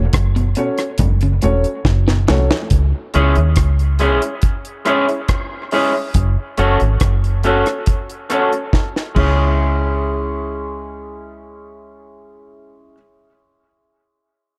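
Deep and meditative, this 70 BPM dub reggae excerpt in C# minor opens on a break where a twangy, lo-fi guitar's echoing arpeggios, a woody upright piano's dub-echoed stabs and faint ringing congas join a round, foam-muted fingered bass and a dry kit with a high-tuned snare and tight kick, before a picked, compressed background guitar entering at 3.1 seconds carries the groove through a drum fill, while the drums stop at 9.4 seconds.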